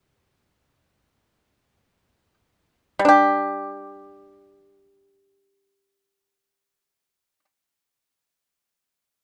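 This excerpt of Chinese traditional music opens with a solo pipa, heard from the very first moment in free time, its plucked strings carrying a contemplative, longing mood. Played with fingerpicks, the instrument sounds percussive and warm, sitting up front and close in a dry 1970s-style studio recording with little reverb. Its line stays within a compact span from G3 to G4, and the pace slows through the opening 3.1 seconds before a new section begins. The pipa falls silent at 7.4 seconds, and the passage closes in quiet at 8.8 seconds. The tuning sits slightly above standard pitch, at A4 = 443 Hz.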